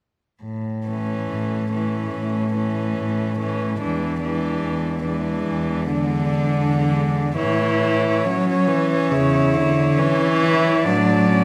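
A gently rubato 4/4 pulse gives this serene classical passage for cello ensemble, cut from a longer piece, an unhurried, breathing quality. A dark-toned bass cello opens alone at 0.4 s, bowed sul tasto with vibrato and a smooth top, and the three remaining cellos join at 0.9 s. The highest cello carries the lyrical melody with light vibrato, an airy bow and a soft attack, while a second line sits behind it in the background and an accompanying cello, played up front, fills out the middle register. Each part is a single close, intimate player bowing over the fingerboard. The harmony moves from A to E7 and then returns to A at 7.4 s, where a new phrase begins before settling onto D/A. A wet scoring-stage reverb wraps the quartet in a glowing halo of space.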